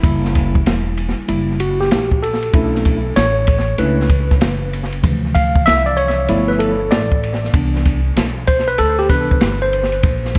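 An echo-heavy mix with light reverb and studio ambience opens this smooth, relaxed jazz-hop excerpt at 96 BPM with a swung 16th-note feel, where a worn, slightly out-of-tune tine electric piano, lightly overdriven through its built-in speakers and treated with tape echo, sits up front and solos across all 10.4 seconds over chords such as F#7b9, Dm9 and Cmaj9, while a woody pizzicato upright bass on steel strings and an open acoustic jazz kit, with a boomy kick, dark cymbals, a medium-tuned snare, a rolled-off top and vintage 12-bit sampler grit, fill out the small room.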